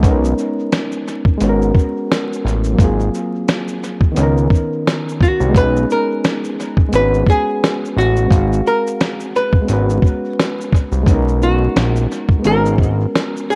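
A gritty, compressed sampler-style drum kit with a thumpy kick and fat snare opens this nostalgic, reflective lo-fi hip hop cut at 87 BPM in G# dorian, swung on the sixteenths, alongside a thick, detuned analog bass with a filter sweep and a barky, reedy electric piano heard through its built-in speakers, the drums and piano trailing dub echo. At 5.2 s a clean, picked hollow-body archtop guitar steps up front with a warm melody, also touched by dub echo, over chords that circle around Bmaj13, G#m11 and G#13. The echo-heavy mix sits in light reverb under a layer of vinyl crackle, as though lifted from a longer piece.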